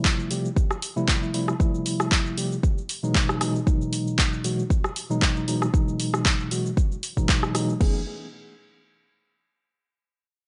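Deep house at 116 BPM with a 55% swing on the 16ths, hypnotic and moody, as mellow tine electric piano stabs pump against the sidechain under a sweeping low-pass filter and digital delay, moving through rootless Dm11 and Emaj9/B before F#m11 at 7.8 s, while an up-front deep electronic kick and a layered kit of dark hi-hats, cabasa, crash, handclaps and rim clicks sit in studio reverb, and a very quiet, hollow, knocking FM bass on F#1 appears only at the very end of this short cut from a longer piece.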